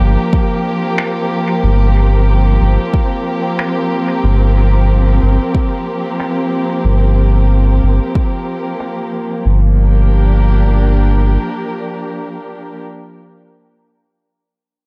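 A lightly reverberant, hazy sound frames this deep ambient dub excerpt at 92 BPM in G minor, with swung sixteenths in 4/4 over a single Gm7 chord. Muted, con sordino chamber strings hold veiled, bowed chords up close with vibrato and a soft attack, while a round, dark analog bass sustains a G1 beneath them until 11.4 s. Up front, an overdriven, layered electronic kick runs under a filter sweep, joined by tape-tinged electronic finger snaps steeped in dub echo and low-pass filtering; the drums drop out by 9.0 s, leaving strings and bass to carry a brief closing passage.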